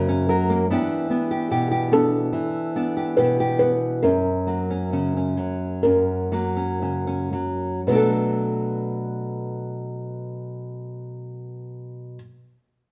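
A damp stone-room reverb surrounds this short cut from a longer acoustic folk-pop ballad in B minor, played live together in one room at a slow 55-74 BPM in 4/4 that eases back in its opening stretch. A bright, classical-style nylon-string guitar sits up front from the start, fingerpicked with fresh strings over chords that move from Em7 to F# and settle on Bm7 at 7.9 s. A felt-muted upright piano brings in the melody at 1.9 s, its dark, mellow notes short-lived and thick with felt, with the soft clatter of its action adding to the reflective, intimate mood.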